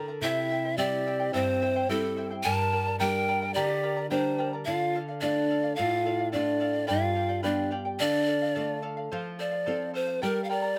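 A breathy bamboo pan flute sits up front and carries the melody from 0.2 seconds, its tongued notes marked by a soft chiff and a gentle vibrato. Beneath it, large cane pan pipes play a second line in a straight, expressive tone with their own tongued attacks, stopping at 8.8 seconds. A bright charango, with its shimmering double strings, and a classical nylon-string guitar with a warm tone are both fingerpicked throughout as accompaniment. The feel of this earthy, festive Andean folk excerpt is straight and set in 2/4, with the harmony moving from C through Gm, Dm and G7 before a brief new section opens on F at 9.1 seconds. Close, detailed microphones and a light reverb give the ensemble an intimate, clear sound in this fragment cut from a longer piece.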